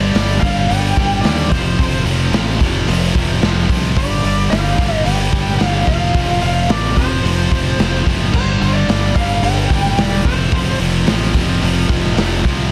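A straight 4/4 pulse at 110 BPM drives this menacing, heavy hard rock excerpt, carried by a raw garage drum kit placed up front, with a punchy kick, a medium-tuned snare, hi-hat and crash cymbal heard in a stone room. A growly fingered electric bass, direct and amped, anchors the low end beneath three picked rhythm guitars grinding out the riff over an alternating G5 and F5 progression. A tight, distorted guitar is one of them, while a crunchy overdriven part and a double-tracked, high-gain guitar fill out the background. Above them, a bluesy lead guitar with a dark, distorted tone and a slapback echo plays the melody in a high register until it drops out at 10.8 s, leaving the riff and rhythm section to continue until 12.7 s. The sound is dry, with little reverb, and the master is dense and heavily limited.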